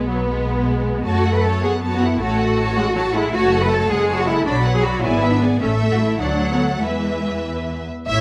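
Expressive, close-sounding cellos carry the bass in this cheerful, spirited classical-period movement for string orchestra, set in a quick 6/8 with a flexible, rubato feel and anchored by a rich, up-front double bass section. A warm, smooth first violin section sings the melody over a clear, distant second violin line in the background, while intense violas supply the accompaniment, every section bowed with lush vibrato. Light reverb and close, detailed microphones frame this short passage cut from a longer piece.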